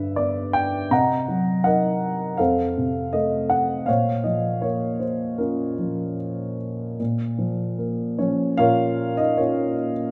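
A dark, intimate baby grand piano plays this short classical excerpt alone, a melancholic, reflective lyrical solo in Bb minor at a rubato 72-82 BPM in 4/4, its mellow, long-sustained, vintage tone sitting up front with audible action noise inside a moderate concert hall reverb, the harmony moving from G through Cm7b5 and F to Bbmadd9 before arriving at Bbm at 7.0 seconds as a new section begins.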